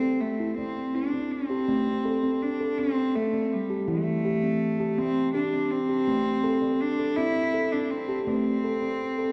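A steel tongue drum and a dark, bowed cello enter together and sit up front. The drum rings round and pure under firm rubber mallets as it plays arpeggios, while the reedy, gut-string cello, smooth on top, carries the melody with delay. This hypnotic, meditative world piece in A minor pentatonic moves slowly at 55 BPM in 6/8, shifting from Am to Em at 3.9 seconds and back to Am at 6.1 seconds, all bathed in a recital hall's lingering reverb within a dark production.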